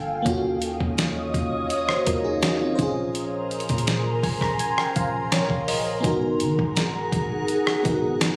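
An FM electric piano layered with a soft pad sits up front in this contemporary R&B excerpt, its lush, dreamy tone touched with chorus, and it steps forward with a fill from 3.9 to 6.0 seconds. The mood is longing and late-night, moving at 83 BPM in a straight 4/4 over minor ninth chords, D#m9, A#m9 and G#m9. A glassy, ethereal FM pad, also up front, holds sustained chords alongside it with a slow attack and long release, colored by ensemble chorus, built-in reverb and phaser. A soft 808-style bass supplies deep, round, sine-like low notes that decay darkly. A dusty soul sampler-style drum kit enters at 0.3 seconds, gritty and compressed, with a thumpy kick, fat snare, rim click and hi-hat. The whole sounds as if captured on a phone in the room, with light club reverb and compression.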